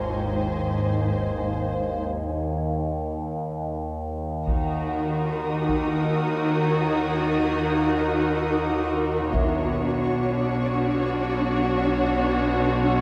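Cinematic suspense film score, uneasy and eerie and in free time, cut from a longer piece. A resonant, up-front drone with moving overtones and chorus sits beneath a flickering, grainy texture of sustained chords, while a distant muted cello section and a background muted double bass section carry the bass, a veiled muted violin section holds the melody, and a slightly out-of-tune, bell-like worn celesta adds a very quiet, delicate shimmer. After a break, heavy-stick solo taiko drums, compressed and saturated, enter at 4.5 seconds and play until 10.9 seconds, alongside a lush muted violin second line, a background muted viola section in accompaniment and a high, close violin texture, all captured with detailed microphones and light reverb that keep the dark con sordino strings intimate.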